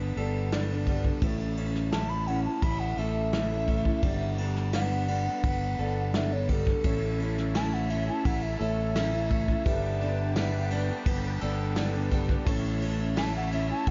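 A breathy, unsteady alto ocarina with vibrato carries the solo melody from 1.9 seconds in this open-road folk rock and heartland rock excerpt at 85 BPM in A mixolydian, over Gadd9 and A chords, a picked acoustic archtop guitar with finger squeak, a slightly broken-up electric guitar riff through a small old amp in the background, a bright, up-front fingered electric bass, and a soft brush drum kit with dark cymbals and a punchy kick, while at 6.8 seconds a very quiet reed electric piano with fast tremolo, a shimmering musette accordion holding sustained chords, and a faint jingly tambourine join, all in a dark, warm production with light reverb and small room ambience.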